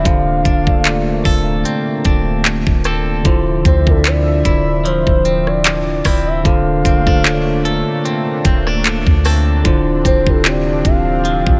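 Soaked in digital ambience, this short cut from a longer contemporary R&B piece has a sensual, moody glow and a lightly swung sixteenth-note feel. Up front, an electronic pop drum kit enters at 0.1 s with a knocking kick, crisp hi-hats, handclaps and rim clicks. Underneath sits a soft 808-style bass, deep and round with a dark, decaying tone. A mellow tine electric piano carries the accompaniment beside a twangy, compressed clean electric guitar picking arpeggios, while a chorused pulse-width pad holds shimmering, retro sustained chords behind them. Over the top, a smooth gliding lead sings the melody, its portamento and vibrato coloured by chorus and phaser, as the harmony rests on Bbmaj9/D before moving to Dm9 at 9.7 s.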